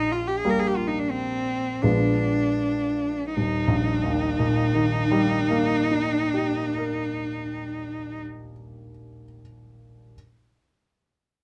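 In a rubato 3/4 at 37-47 BPM that slows through the first 3.4 seconds, this serene romantic classical duo in Eb major, tuned to A4 = 437 Hz, sets a rich, focused bowed cello melody with vibrato, close and up front until 8.2 s, over clear grand piano accompaniment with short sustain that carries on to 10.2 s, the harmony moving from Bbsus2 through Bb7b9 to rest on Eb within a moderate studio reverb, in a fragment cut from a longer piece.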